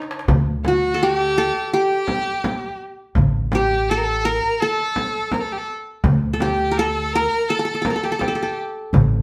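Arabic maqam ensemble music in a soulful, melancholic mood, cut from a longer piece and opening on a drum fill at 0.0 seconds. Up front, a bright-edged, plectrum-plucked qanun with triple strings carries the melody over a woody, thumpy pizzicato upright bass on gut strings and a deep, close, dry frame drum, while a rich bowed violin with vibrato enters at 0.7 seconds as a focused second line. A clay-shell darbuka struck with hard hands sits in the background, and the band plays live in one room, framed by a wet studio reverb.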